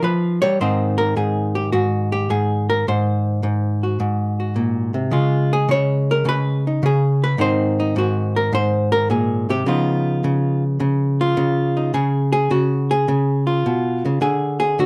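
An archtop guitar opens on an Eb9 chord, its electric tone clean, dark and hollow-bodied, picked and placed up front. This short cut from a longer solo jazz piece moves at a relaxed 106 BPM in 4/4 with a swung eighth-note feel, centered on Ab mixolydian. From 0.6 seconds the lone guitar moves through Ab9, Db5, Abadd9 and Db9, spanning Ab2 to Db5. Light reverb surrounds the miked and amplified guitar, and the production leans dark and warm. The mood stays warm and relaxed until the excerpt stops at 14.9 seconds.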